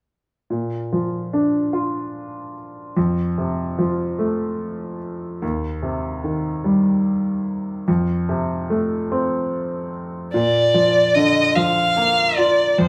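Tender and romantic, this short pop fragment in 6/8 moves at 49 dotted-quarter beats per minute in Bb major (tuned to A4 = 438 Hz), with a clear, vintage-toned grand piano of short sustain accompanying from 0.5 s over Bb, F, Cm/Eb and F chords before a single bowed violin, rich and focused with vibrato, enters at 10.3 s with the melody as the harmony returns to Bb, both parts up front in a live one-room studio performance with a wet reverb, closing at 12.9 s.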